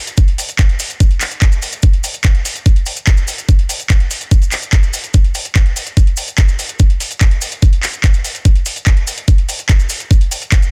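Intense and driving, this trance excerpt moves at 145 BPM in a straight 4/4 feel, built entirely from rhythm parts. An electronic kick drum sits up front, layered and produced with a knocking attack, running from 0.2 to 10.6 seconds as the loudest element. A drum and bass drum kit adds handclaps and metallic hats, its electronic, layered sound carrying the character of a small room. Maracas sit in the background with a grainy, mellow acoustic texture, heard close. The whole passage stays in one section, dry with little reverb and pressed into a dense, heavily limited modern master.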